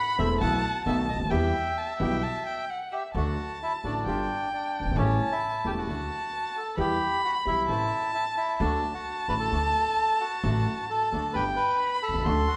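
Sultry and passionate, this short cut from a longer tango moves at 132 BPM in 4/4 with a rubato feel, centred on E minor. A reedy, vintage-toned bandoneon carries the melody up front, its band-limited voice joined throughout by a dark, bowed solo violin on a second line, sung with vibrato, portamento and a smooth top. Underneath, a grand piano gives warm accompaniment while a pizzicato upright bass with steel strings supplies a woody low end. A second bandoneon adds very quiet, bright and airy stabs in the background. The harmony opens on B7sus4 resolving through B7 to Em, then from 3.2 seconds moves through D, G7, A7, D, Em, Am and D before settling on G at 11.4 seconds. The band plays live together in one room, bathed in a wet large-studio reverb.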